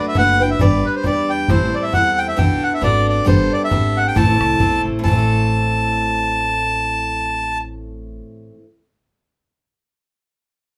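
Celtic folk polka in A dorian at 135 BPM in a swung 2/4, its wild, driving mood carried by an up-front, reedy single-reed accordion melody with a clear, dry tuning. A bright, full-bodied dreadnought guitar is picked up front beside it with audible finger squeak, while a woody, thumpy pizzicato upright bass anchors the low end and a boomy, open bodhran drives the rhythm until 5.3 seconds. The band plays live together in a studio room with a touch of wet ambience, and this brief cut of a longer tune ends with the guitar as the last part still playing, stopping at 8.7 seconds.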